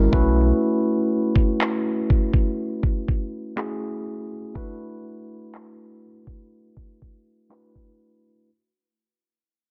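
Contemporary R&B in a smooth, tender mood at a slow 61 BPM, this short excerpt cut from a longer piece sets a mellow, clean tine electric piano up front over a B9sus4 chord that shifts to E9sus4 at 4.6 seconds, while a deep, round sine sub bass sounds only briefly until 0.5 seconds and a produced electronic drum kit adds handclaps and a knocking kick, all set in light digital reverb with a dense, heavily limited modern master, a filter sweep and a fade-out running throughout.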